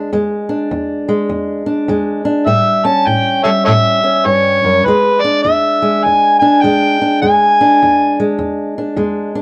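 A swung 4/4 groove at 102 BPM in E mixolydian drives this gritty, swaggering acoustic country blues excerpt, where a boxy, woody fingerpicked old ladder-braced acoustic guitar with old strings sits up front from 0.0 seconds over E7, A7 and E7, and an amplified, overdriven harmonica enters at 2.5 seconds with a jazz-style solo full of tongue slaps and scooped notes, all in a dark production with light reverb.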